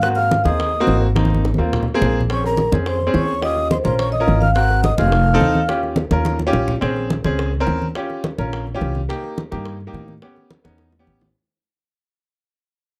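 A brisk, straight four-beat groove drives this lively, sophisticated Afro-Cuban jazz fragment, cut from a longer piece. Thick-skinned, medium-tuned congas played with soft hands sit in a small room, while tight, high-tuned bongos chatter in the background, and short percussion fills punctuate the phrases. Up front, a woody, thumpy pizzicato upright bass with dark gut strings anchors the bottom, joined by an intimate concert grand piano whose deep bass and audible action noise lend a natural, close feel. Until 5.8 seconds, a ringing, metallic vibraphone with soft mallets carries the melody alongside a breathy silver flute that traces a higher second line with vibrato, a crisp attack and a slightly unsteady tone. The harmony moves through rich ninth and minor-seventh colours, and from 6.8 seconds the rhythm section carries on alone as the music fades out, all within a dry, close 1970s-style studio sound with light reverb.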